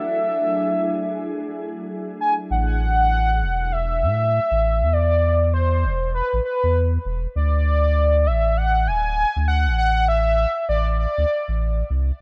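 A velvety, detuned synth lead with chorus and tape echo carries the eerie, melancholic melody through this swung 99 BPM IDM fragment, first over a glassy, warbling FM pad that stops at 2.5 seconds, when a round, deep sub bass enters up front beneath chords moving from Dadd9 to Amadd9 and Dsus2 in a dry, rough home-demo mix.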